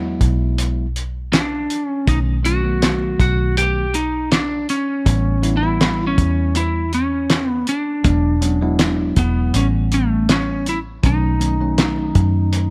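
Soul blues with a straight-eighth, lightly swung feel and a swaggering, laid-back mood, cut from a longer piece and moving through E7, B7 and A7 changes. A bell-like tine electric piano supplies clean accompaniment, while a vintage foam-muted fingered electric bass sits dark and round up front, and a cloth-damped, thuddy drum kit enters at 0.2 seconds with a fat snare, tight kick and gritty, muffled small-room character. From 1.3 seconds a lightly driven, slightly broken-up lead guitar carries the picked, compressed melody in a dry, close-sounding mix.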